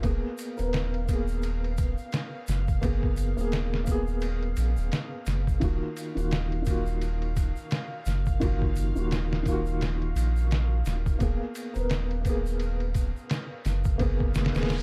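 Brooding and smoky, this trip hop excerpt sets a felt-muted upright piano, soft and intimate with tremolo, vintage 12-bit sampler grit and tape echo, over a round, deep analog bass and an up-front, pitched-down, muffled sampler drum kit with a thumpy kick, medium-tuned snare and ride cymbal under a lazy 16th-note swing. Far back, a distant egg shaker sits in a large room while a tense, detuned string-like drone on F5 hangs with reverb, phaser and vibrato. The chords move from Abmadd9/Eb to Ebmadd9 and back in a dark, warm production, and a faint electronic noise sweep closes the clip at 14.3 seconds.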